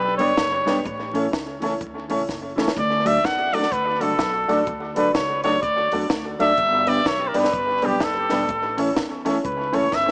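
Upbeat and cheerful, this swung ska passage moves at 126 BPM in 4/4 in D major, with the harmony shifting from G to A to D and back through G and A. A breathy trumpet sits up front and carries the solo melody throughout, its soft attack, vibrato and intimate, vintage pop-style tone colored by tube saturation and tape echo. Behind it, an upright piano adds woody stabs with long sustain and its own tape echo, while a dark, clean, fingered electric guitar stays in the background as accompaniment. A pizzicato upright bass with steel strings anchors the low end, and a compact, dry cocktail kit with a high-tuned snare and punchy kick plays hi-hat, kick and snare, breaking into drum fills at 2.3 seconds and again at 9.9 seconds. The mix has an echo-chamber reverb, vinyl crackle and a small-speaker sound that give this cut from a longer piece an old-record character.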